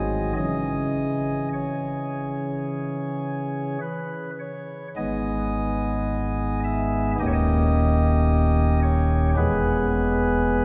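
A solo pipe organ on soft, warm flute stops, with a touch of chiff and a baroque voicing, carries this dark, solemn classical chorale, heard up front in a brief excerpt cut from a longer piece. Moving at a slow 52-55 BPM in straight 4/4, it opens in C# minor and turns toward G# minor at 5.0 s, passing through D#7 before settling on E at 9.4 s. The organ spans a deep low register up to the middle treble, and a long cathedral reverb, lingering around 4.8 seconds, fills the church or concert hall around it.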